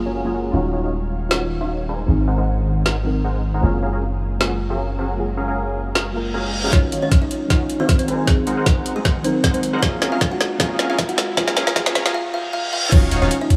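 A buzzing, warm kalimba carries the melody from 6.7 seconds, its bright, short plucks treated with digital delay and sidechain pumping, in this playful, lush future bass excerpt set in a half-time feel with a light swing. Alongside it, a punchy, detuned supersaw stab plays a riff through a low-pass filter that is swept during the build-up. A soft, round pluck with analog chorus and tape echo sits dark in the background. An ethereal, warbling pad holds slow-attack chords under ensemble chorus and its own reverb, while a deep, mellow 808-style bass sustains long sine notes up front. A tape-warm trap kit with a woody snare, metallic hats and crash enters at 1.3 seconds, a knocking, layered electronic kick arrives with the kalimba, and a very quiet reverse cymbal and riser lead into the second section and a brief break at 12.1 seconds, all over chords moving between Gbmaj9, Ebm9 and Ab7 in a light digital ambience.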